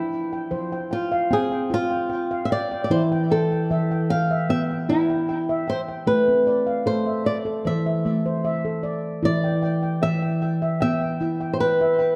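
Ringing handpan arpeggios, struck with soft fingertips on nitrided steel, and a fingerpicked flamenco guitar melody with fresh strings and a diffuse ambient delay sound together from the start of this hypnotic, gentle world meditation piece at 76 BPM, tuned to A4 = 438 Hz and cut from a longer piece, with both parts up front in a dark, warm mix bathed in a wet echo-chamber reverb over chords moving from F5 through E5 and Am.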